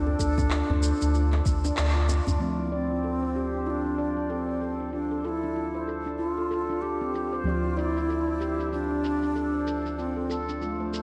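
A swung sixteenth-note groove of electronic shaker and handclaps runs through this earthy, mystical organic downtempo excerpt, with a soft overdriven kick that drops out early, a very quiet close djembe and a round sine sub bass with sidechain pumping beneath the opening moments until 2.4 seconds, when muted, dark felt-like synth keys with chorus take up the accompaniment under a breathy, vibrato-laden bass bansuri melody and ringing stainless-steel handpan arpeggios whose filter sweeps drift through a dreamy, reverb-soaked hall.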